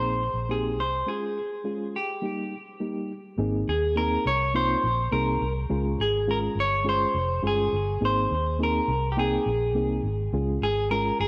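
A clean, picked electric guitar carries the melody up front from the first moment of this uptempo 1960s-style soul piece. It is joined at once by a mellow, reedy electric piano with fast tremolo played through its built-in speakers, and a round, punchy, foam-muted fingered bass. Moving in a straight 4/4 at 104 BPM in Ab major, the joyful groove cycles through Abadd9, Db and Eb, with a break from 1.1 to 3.4 seconds before a new section begins, while the guitar's spring reverb and tape echo sit inside a moderate plate reverb.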